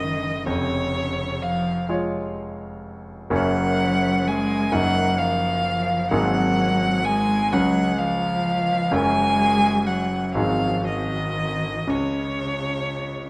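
Set in a slow 6/8 at 42 dotted-quarter beats per minute, with uneven beats and free rubato, this tender classical movement for piano trio in Db major is cut from a longer piece. A rich, smooth violin with even vibrato carries the bowed melody up front, while a warm, expressive cello sings a second line with vibrato and portamento, both played by single players and set at a slight distance. A clear, polished concert grand with deep bass gives present accompaniment, its harmony moving from Db/F through Gb and Ab9 until the chords give way at 11.9 seconds, and the trio sits within a moderate scoring-stage reverb.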